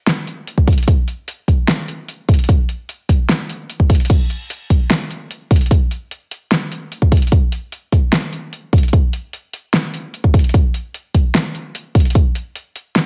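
A pop drum kit opens this bittersweet, emotional future bass excerpt at 0.1 s, with a fat snare, metallic hi-hats and crash cymbal sitting up front in a small room. At 0.6 s a punchy, tape-warm electronic kick drum joins the 149 BPM half-time groove. The whole recording carries a digital ambience and a heavily compressed, radio-like sound.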